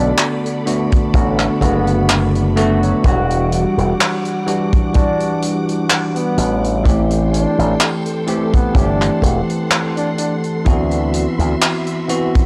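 Vaporwave in E minor at 63 BPM, melancholic and hazy, with a lightly swung 16th-note feel over a Bm7, Em9, Am7 and D13 progression. A breathy, mellow flugelhorn carries the melody with vibrato and scooped notes through tape echo until 10.3 seconds, over a bell-like tine electric piano bathed in lush chorus, a silky vintage string machine holding slow-attack chords, and a bright, punchy slap bass shaped by an envelope filter. A natural country drum kit with handclaps and hi-hat comes in at 0.2 seconds, joined by an up-front punchy kick at 0.9 seconds, all captured as a dry, gritty hardware recording with light reverb and small room ambience in a clip cut from a longer piece.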